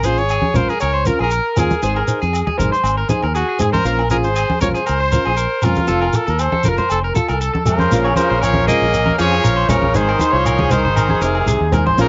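Heard through the softly reverberant, band-limited sound of a home cassette, this bittersweet highlife guitar band passage in Bb minor moves at a straight 118 BPM, with a clear, punchy trumpet carrying the melody over a full-bodied fingerpicked steel-string acoustic guitar, twangy slightly broken-up electric guitar arpeggios, a round, up-front fingered electric bass, grainy shekere, low-tuned congas struck with hard hands and distant ringing agogo bells, until an edgy tenor saxophone with analog delay adds a second line at 7.7 seconds and a very quiet, shimmering musette accordion brings sustained chords from 7.9 seconds.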